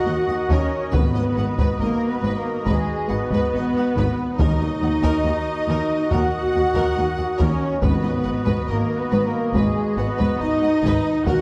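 A cinematic, epic orchestral film score excerpt, dark and dramatic, moving at a slow, straight pulse in four. Two lush, clear violin sections carry the melody and a second line above a rich viola accompaniment, while mellow French horns in the background and soft-attacked, distant woodwinds hold sustained chords. Cellos and a distant double bass section, bowed smoothly with vibrato, anchor the low end from 0.1 seconds. A close, dry taiko ensemble struck with hard sticks enters at 0.5 seconds, and timpani played with medium mallets join at 0.9 seconds from further back in the room. The harmony shifts between minor chords, and a generous scoring stage reverb gives the orchestra a grand, spacious sound.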